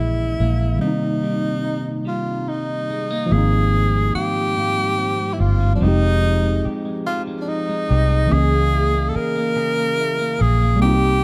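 A breathy, close-miked tenor saxophone sings a subtone jazz melody with vibrato over a round, foam-muted fingered electric bass, a worn and slightly out-of-tune tine electric piano, and a compressed, picked electric guitar at the edge of break-up in this sensual, slow six-eight R&B excerpt in Ab major at 48 BPM, with a break from 0.8 to 3.3 seconds and a dark, warm production in light digital ambience.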